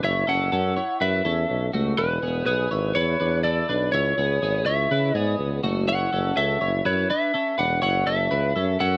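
A straight 4/4 pulse drives this wistful, restless jangly indie pop, with a slightly broken-up, picked lead guitar carrying the melody up front over clean, chorused twelve-string electric guitar arpeggios and a punchy tuba with light vibrato and a smooth top holding down the bass in a lightly reverberant room, as the chords move from F#m7 through E and C#m7 back to F#m7.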